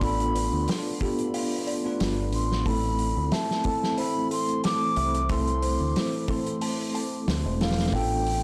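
Crackling vinyl and saturated small-room ambience frame this brooding, hypnotic trip hop excerpt in A minor at 91 BPM with a light swing, where a round, up-front fingered electric bass and a loose, distant indie drum kit with a fat snare and tight kick carry a bell-like tine electric piano, gritty with vintage sampler crunch, tremolo and tape echo, over a G7/A chord that settles onto Am at 2.7 seconds, while an airy, expressive baroque flute sings with vibrato and echo, a deep detuned ambient pad rises in the background from 0.2 seconds, and a delicate, tinkling music box adds echoing arpeggios from 0.4 seconds.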